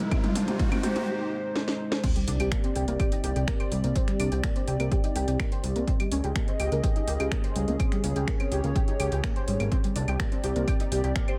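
Melancholic and hypnotic, this melodic techno excerpt in C minor moves at 125 BPM, opening with a two-second build-up where a deep, moody analog pad and a soft, round pluck arpeggio under a filter sweep sit with a riser, a drum fill, and a very quiet drone of moving overtones that ends at 1.1 s as a brief break begins. At 2.0 s the drop lands with an impact and sub drop beside a punchy, up-front kick, cracking snare and metallic hats, and at 2.3 s a fat, detuned sawtooth bass with tube saturation and sidechain pumping joins. The pad and pluck keep pumping with chorus, the pluck trailing delay, over chords moving from Csus2 to Db5 and back, all in light digital reverb.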